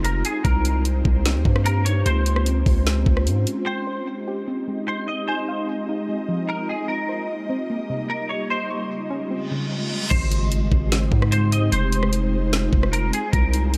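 Spacious and melancholic, this atmospheric cloud-rap excerpt in half-time floats on an airy, detuned pad with ensemble chorus and reverb, a clean hollow-body electric guitar melody with tape echo, and a deep sine 808 bass with a knocking-kick, woody-snare R&B kit that drop out around 3.5 seconds while a soft, dark pluck arpeggiates, before a reverse cymbal and impact bring the bass and drums back at 10.1 seconds.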